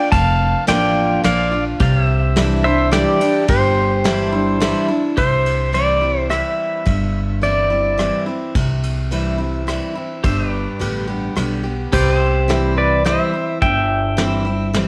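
Honky-tonk and classic country in an easygoing, nostalgic three-time lilt. A bright, twangy pedal steel guitar carries the melody up front with fingerpicks, slide and volume swells, pausing at 8.2 seconds and returning at 11.9. Beneath it, a second pedal steel holds soft sustained chords in the background with a subtle chorus, while a full-bodied picked dreadnought acoustic guitar, a woody, thumpy pizzicato upright bass and a dark, smooth brushed drum kit fill out this short cut, all set in a small room with moderate echo-chamber reverb.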